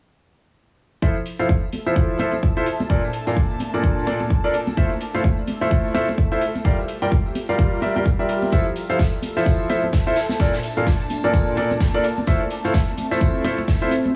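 A clear, intimate grand piano sits up front with a riff, its action noise audible and long sustain pumping under sidechain with a low-pass filter and tape echo, as Fmaj7, Bbmaj7 and Gm7 chords cycle through this euphoric, uplifting piano house excerpt at 128 BPM in F major with a 16th-note swing. A punchy, tape-colored electronic kick drives it alongside metallic electronic hi-hats and acoustic tambourine and congas, while an ethereal, detuned pad with ensemble chorus and a slow attack drifts in the background from 1.7 seconds. At 8.5 seconds an airy, polished street-band drum kit of hi-hat, snare and tambourine joins far back, high-pass filtered and touched by tape echo, all within an echo-heavy mix and small room ambience.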